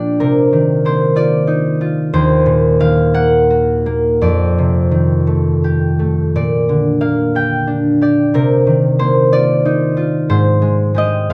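A classical solo harp piece, this short passage from a longer work carries a peaceful, serene mood in 6/8 with a free, rubato feel. The concert harp is the only voice, fingerpicked and ringing, and it sits up front in the mix, spanning a range from Eb2 to G5. Its tone is acoustic and warm, framed by light reverb and a dark, warm production. The harmony drifts through lush extended chords, opening on Cm11 at 0.2 seconds and moving through Ebm6, F13 and Bb6 before returning to Cm11 and settling on Abmaj7 at 10.3 seconds. The whole fragment lasts about 11.3 seconds, unfolding as a single unhurried span.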